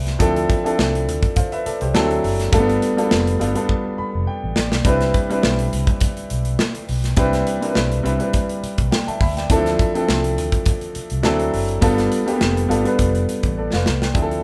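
A band playing live in one room fills a large studio with moderate reverb, giving this excerpt from a longer piece of lush 1970s-style soul a smooth, silky glow. At 103 BPM in 4/4 with a light sixteenth-note swing, the baby grand piano sits up front, its tone warm and boxy as it carries the accompaniment through Dm9, D7 and G9 before resting on Cmaj9 and circling back. Beneath it, a vintage muted fingered electric bass plays a dark, round, punchy part from its amp in a low register. A modern studio drum kit enters at 0.1 s, airy and polished with a tight kick, a medium-tuned snare and hi-hat, placed up front with a small-room character. Piano and drums share a fill between 3.7 and 4.8 s, and the drums add another just before the close at 13.6 s.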